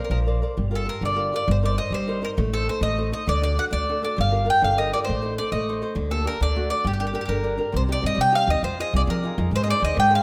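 Light reverb gives a gentle sense of space to this passionate, romantic Italian serenade, a short cut from a longer folk piece in 6/8. The mandolin carries the melody up front, its picked double strings sounding woody as the line moves between G4 and G5. Beneath it, a flamenco guitar plays a warm, fingerpicked accompaniment, set lower in the mix, with small finger squeaks audible on the strings. An upright bass enters at 0.1 s, its steel strings played pizzicato with a woody, warm, up-front tone. The harmony passes through minor chords, a diminished chord and a D major chord, before a new passage begins at 7.8 s and moves through Cm, Fm7 and Ab until the cut ends at 10.2 s.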